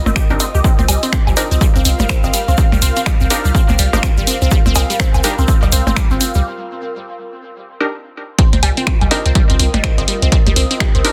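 An airy, breathy pad with chorus and phaser opens this hypnotic, quirky minimal techno excerpt in C minor at 124 BPM, swung on the 16ths over a Cm7 chord. A squelchy, resonant blip pluck riff with dub echo and a deep sub bass with a pitch-drop attack and tube saturation both pump against an up-front electronic kick, joined by crisp wavetable chord stabs with delay. Around them sit an analog drum machine's finger snaps and hi-hat, tape-warm cowbell, woodblock and percussion blips, and a grainy egg shaker that stops at 6.4 seconds, just before a break at 6.5 seconds leads to the drop at 8.4 seconds, all in light reverb and a dense, heavily limited master.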